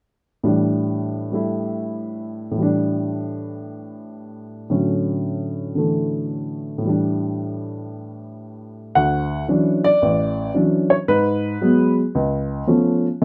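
A swung eighth-note feel at 113 BPM in 4/4 drives this short, sophisticated solo jazz fragment in D major, cut from a longer piece. A lone upright piano with a warm, woody, up-front tone spans from deep bass to the upper middle register, moving from A7sus4 and Dmaj7/A voicings into a second section at 9.0 seconds that opens on Dmaj9 and turns through G#m7 to C#7b13. A moderate club reverb surrounds the piano until it stops at 13.2 seconds.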